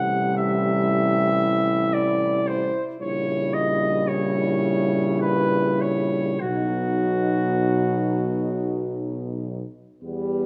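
A moderate recital hall reverb gives this brief, elegiac cut from a longer classical brass band piece a roomy, distant glow as it moves in slow 3/4 at 49-60 BPM with a rubato, hymn-like feel over Am7, A#dim7 and B. Up front, a warm flugelhorn carries the solemn melody until 8.8 s, while a dark French horn section with soft attack and light vibrato supplies a second line. A dark euphonium and a smooth-topped trombone fill out the accompaniment, and a clear, vintage-toned tuba holds the bass in the background through 10.5 s.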